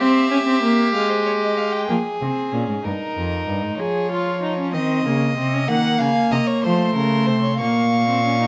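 A baroque-style fugue for string quartet, this short passage cut from a longer piece moves at 63 BPM in a straight 6/8, its mood solemn yet driving. The viola and the second violin both sound from the start and carry through, the viola's full-bodied accompaniment set forward in the mix and the second violin's warm, reedy line placed up front as well. The first violin takes the melody, dropping out at 1.9 seconds and returning at 5.7 seconds, its period-style gut-string tone shaded with light vibrato. The cello enters at 1.9 seconds with a nasal bass line, sounding at once close and distant, much like the viola. The harmony turns through minor colors, touching Fm, Eb, Db/F, Cm and F before settling on Bbm, all carried in a moderate recital-hall reverb.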